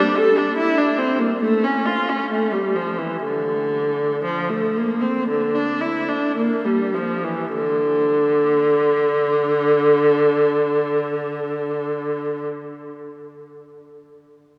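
Grave and introspective, this baroque-style suite movement for unaccompanied viola unfolds in a free, rubato 4/4, easing and slowing through its opening 7.5 seconds before moving into a second section. A single bowed viola carries everything alone, its rich, smooth tone shaded with vibrato and kept even and up front, ranging from D3 to A4. The playing is heard from further back in a cathedral-like space whose long, wet reverb lingers around each phrase in this short excerpt from a longer piece.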